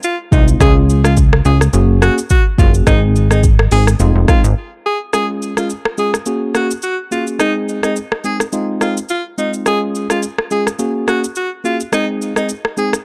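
Romantic and sunny, this afrobeats excerpt rides a lightly swung groove from an electronic drum kit with a deep kick, metallic hats, rim click and shaker, while a worn, slightly out-of-tune tine electric piano sits up front with the chords. An edgy, forceful alto saxophone carries the melody with scooped notes, light vibrato and a touch of delay. A punchy, funky sawtooth bass with a fast-attack filter pluck drives the opening until 4.5 s, just before a brief break at 4.6 s, all within a dry, dark production.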